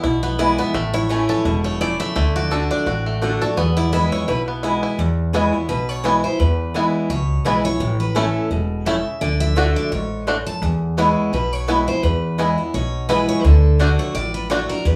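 A twangy, percussive bluegrass banjo leads this driving, virtuosic excerpt, its fingerpicked melody sitting up front from the opening moment. A picked steel-string dreadnought guitar joins at 0.2 seconds with a full-bodied second melody set higher, while a boxy archtop guitar picks out the accompaniment close to the listener, finger squeaks audible on its strings. The mandolin adds bright double-string stabs from further back, and the woody, dark pizzicato of the upright bass anchors the low end prominently. At a brisk 170 BPM in 4/4 with a light swing on the eighth notes, the tune moves through E, A and D in E mixolydian, shifting into a new section at 5.0 seconds. The band plays live together in a small room, with a short, wet studio reverb lending a touch of space.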